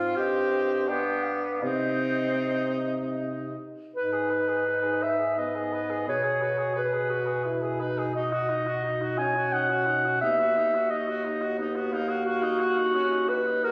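Melancholic and solemn, this lyrical classical passage for single-reed quartet moves in a rubato 3/4 at 76-90 BPM, its mellow, smooth-topped clarinet melody sitting up front while a clear alto saxophone with light vibrato and soft attack carries a second line, a warm tenor saxophone with light vibrato accompanies, and a bass clarinet anchors the low end, the three lower voices set back and roomy in a recital-hall reverb, with the harmony shifting from C minor to G# minor at 3.9 s and the phone recording made in the room losing its highest frequencies.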